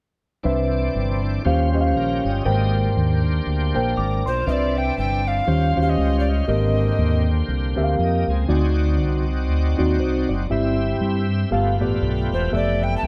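Swung eighth notes roll over a steady four-beat pulse in this hopeful, reverent slice of uptempo gospel, cut from a longer piece. A mellow tine electric piano carries the accompaniment through clean built-in speakers. A bright, shouting tonewheel organ holds sustained chords, lightly overdriven with key click, chorus vibrato and a slow rotary speaker. Underneath, a round, punchy fingered electric bass sits dark and up front. An airy alto recorder with a crisp, chiffy attack and straight tone takes the melody from 4.3 to 7.3 seconds and returns at 12.3 seconds, close-miked and woody. The band plays live in one stone room with moderate reverb, moving through rich harmonies such as Cmaj9, Eb13, D7b9 and Fmaj9#11.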